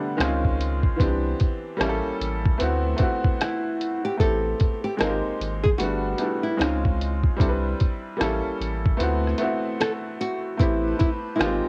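Recorded at home onto cassette with studio reverb, this nostalgic, reflective lo-fi hip hop excerpt in A dorian swings at 75 BPM as a fingerpicked nylon-string guitar with old strings carries the melody over a bright upright piano with audible action noise, a round sine sub bass, and a muffled, pitched-down sampler-style drum kit whose thumpy kick drops out from 9.0 to 10.6 seconds, before a reedy, breathing pedal harmonium adds sustained chords at 10.6 seconds on the closing Am9.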